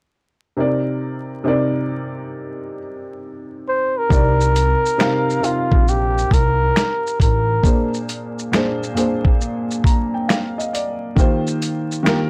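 Reflective and nostalgic, this swung lo-fi hip hop excerpt in C minor drifts at 68 BPM as a worn, slightly detuned upright piano with cassette-tape character opens alone. A breathy flugelhorn enters at 3.7 seconds with vibrato and scooped notes, and woody pizzicato upright bass and a dusty, compressed sampler-style kit of thumpy kick, snare, hi-hat, shaker and finger snaps join at 4.1 seconds. The piano plays a fill at 9.4 seconds as the harmony moves from Cm7 through Bb7 to Eb6, all in a dry, gritty recording dusted with vinyl crackle.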